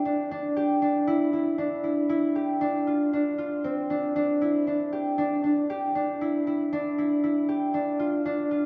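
Restless and playful, this short contemporary instrumental passage is cut from a longer piece and moves at 117 BPM in an uneven 5/4 metre with a straight feel. A solo concert harp carries it from start to finish, its fingerpicked, ringing tone staying close in the middle register between C4 and G4. The harmony alternates between Em7 and Cadd9, changing at 2.6, 5.2 and 7.7 seconds, with the final Cadd9 voiced rootless. Even though the harp sits up front, the listener is placed further back in the room, with a wet concert hall reverb lingering around each note. The result feels airy and spacious, the odd metre keeping the warm acoustic sound quietly unsettled.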